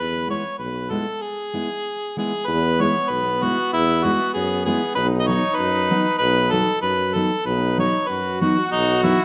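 Alpine folk in a festive, jolly alpine dance band style at 96 BPM in 2/4 and E major, with a smooth-topped harmonica carrying the melody up front in light-vibrato classical style over a distant, roomy tuba bass with scooped notes and a dark, full-bodied fingerpicked steel-string acoustic guitar, joined at 2.5 seconds by a mellow, close-miked trumpet second line, all set in a moderate recital hall reverb as the chords move from E to Eadd9 to B in this short cut from a longer piece.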